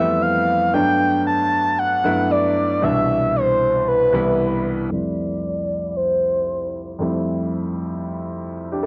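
Amapiano with a relaxed, warm mood and a gentle 16th-note swing, this fragment opens on a drop that lasts until 4.9 seconds, over Fmaj9, Gmaj9 and Cmaj9 chords. An up-front, breathy, flute-like synth lead with vibrato carries the melody until 6.7 seconds, softened by chorus, a low-pass filter, cassette tape coloring and tape echo. A natural-sounding grand piano plays accompaniment throughout, also filtered and tape-tinged, in a moderate booth ambience with a homespun cassette character.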